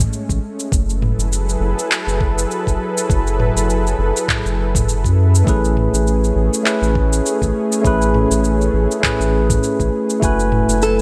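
A lush, detuned sawtooth pad with chorus, a round, deep analog bass, a knocking, tape-warm electronic kick and a smooth R&B kit of cabasa, handclaps and toms with a 16th-note swing open this relaxed sunset chillout excerpt at 101 BPM in A major over Amaj7 and F#m11 chords, before a clean tine electric piano with delay enters at 5.4 seconds and a dark, fingerpicked flamenco guitar with finger squeak appears up front at 10.8 seconds, all in light reverb.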